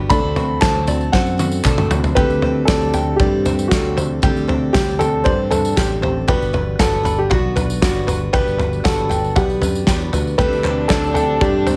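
Anthemic and hopeful, this short indie folk excerpt moves at 117 BPM in a straight 4/4, centred on D mixolydian with chords shifting from D7 to D7sus4, Gmaj7 and back to D7sus4. A dark, woody upright piano carries the melody, while a bright, full-bodied picked steel-string acoustic guitar and a fingered electric bass with a direct, amped edge anchor the harmony and low end. In the background, a twangy, plunky open-back banjo spins arpeggios, and a reedy, breathing pedal harmonium holds very quiet sustained chords. A loose indie drum kit with a fat snare, punchy kick and rolled-off top sits up front in a small room, joined by a jingly tambourine, and a drum fill runs from 1.1 to 2.2 seconds. Crisp group handclaps sound from a distant large room in brief bursts, and a dark, bowed fiddle with light vibrato and digital delay enters at 10.4 seconds as a second line on D4, all under a light reverb.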